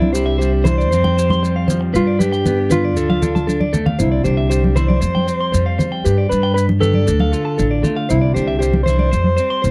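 A mellow, jazz-style alto saxophone with vibrato carries the melody up front in this danceable highlife guitar band excerpt, set at 117 BPM in a straight 4/4 over a cycling Cadd9, Fsus2, G and Dm progression in C major. Beneath it, a woody pizzicato upright bass thumps, a twangy, scooped electric guitar at the edge of break-up supplies accompaniment, and a bright, clean guitar picks arpeggios bathed in spring reverb. Damped, thick-skinned congas and grainy maracas round out the percussion in a dry, close 1970s-style studio sound with light reverb.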